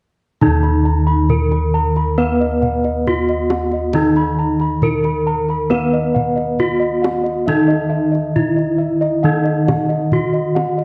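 Shimmering and hypnotic, this Javanese gamelan excerpt sets a dark, ringing, up-front bronze metallophone melody over a lower metallophone accompaniment whose paired tuning gives shimmering beats, while mellow bossed gongs struck with padded beaters add airy high arpeggios and a vintage, band-limited bass line, and a tight, dry kendang supplies soft-handed percussion, the whole piece heard through a moderate stage reverb and a worn, warbling old cassette tape with drifting pitch.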